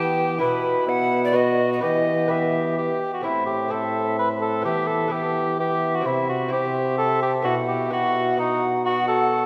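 A classical, renaissance-style consort dance in 3/4 at 128 BPM in E minor, this courtly yet rustic fragment sets an airy, hollow tenor recorder melody with a wooden, tongued chiff above an up-front cor anglais second line with light vibrato, while a very quiet, delicate lute fingerpicked on gut double strings, a background bassoon and a soft-attack trombone bass, both mellow, move through Bsus4, Em, Am and C under a wet church reverb.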